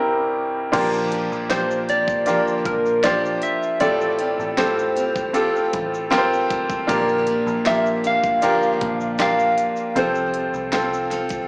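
A soft, round synth lead with a gentle, keys-like FM tone and a warble opens this tender pop ballad alongside a clear concert grand piano, whose deep bass and audible action noise sit intimate and up front. At 0.7 seconds the rest of the band joins at an unhurried 78 BPM in straight 4/4. A bright, full-bodied steel-string acoustic guitar picks arpeggios beneath the melody, and a dark, foam-muted vintage electric bass adds a punchy low end. A produced, electronic pop drum kit brings a knocking kick, fat snare, crisp hats and crash, while a grainy egg shaker stays close and dry in the background. The harmony moves through Bb6, Fadd9/A and Gm7/Bb before settling on F/C near 10.0 seconds. Slapback echo touches the synth, piano and guitar, and the whole heartfelt excerpt carries the light club reverb and small-speaker colour of a live gig heard through a venue's PA.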